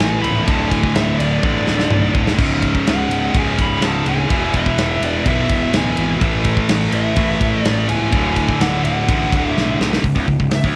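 This epic, aggressive heavy metal excerpt opens at once at 126 BPM in a straight 4/4, with an up-front, bright high-gain guitar riff doubled by a very quiet scooped guitar, a tight-kicked acoustic drum kit in a small room, and a growly, fuzz-overdriven picked bass sitting in the background. Above them, a dark, distorted lead guitar carries the melody through cassette-tape coloring and tape echo, over chords that move from D5 through C#5, E and A5 to D. The drums mark the phrase with fills at 1.4 and 9.6 seconds, and light reverb and a home cassette recording give the whole clip a raw, lo-fi edge.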